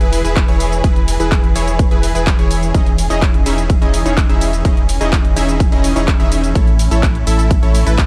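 Festival progressive house at 126 BPM in a straight 4/4, this short excerpt feels uplifting and triumphant, moving from E through C#madd9/E at 2.7 seconds to A at 6.6 seconds. A punchy, detuned supersaw stab carries the riff from C#4 to E5, its sawtooth unison sound marked by a filter sweep, dub echo and sidechain pumping. Beneath it, a bowed symphonic string section holds lush, vibrato-rich chords in a close, focused ensemble sound, also pumping with the sidechain. A deep, thick, saturated sub bass anchors the low end between E1 and A1, while a layered, overdriven big-room drum kit supplies handclaps, hi-hat, ride cymbal and shaker. An up-front, overdriven electronic kick enters at 0.4 seconds, and the mix is dark, dry and warm overall.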